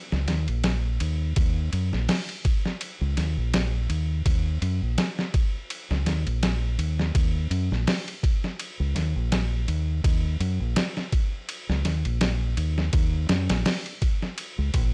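Smoky and melancholic, this trip hop excerpt settles into an unhurried 83 BPM in 4/4, with a light swing on the sixteenths and a home key of E-flat minor. A deep dub electric bass, played with the fingers, runs from 0.1 to 14.9 seconds, its dark, round tone sitting up front and thickened by tube saturation. Alongside it, a boom bap sampler-style drum kit covers the same span with hi-hat, kick, ride cymbal and snare. The kit sounds compressed and pitched down, with a thumpy kick, a medium-tuned snare and a tape-warm grit that keeps it close and present. The whole recording is dry and rough-edged, carrying the character of cassette tape, and the passage is cut from a longer piece.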